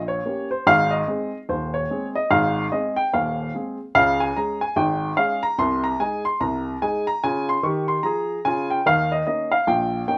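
Swung sixteenths over a 2/4 metre carry this cheerful, playful ragtime excerpt, cut from a longer piece. A solo upright piano, woody and up front with a long sustain, covers a broad span from deep bass to bright treble, moving through a series of chord changes over about ten seconds. A moderate studio reverb gives the room a modest sense of space.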